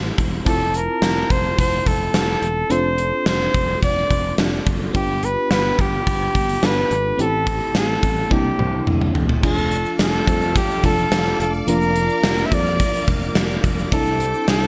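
A glassy, bell-like FM electric piano with chorus and a growly fretless bass open this glossy, nostalgic 1980s-style pop excerpt at 107 BPM, joined almost at once by a punchy gated drum kit with bright cymbals and a clear, close-miked flugelhorn melody carrying tape echo. The chords move from Fmaj7 through Dm7/F, G7 and Am7 to C9, where a drum fill at 8.3 s leads into a new section at 9.4 s. There a shimmering sawtooth string machine with ensemble chorus and a grainy tube shaker enter in the background over Dm/F, Bb/F and Cadd9, set in a light small-room ambience.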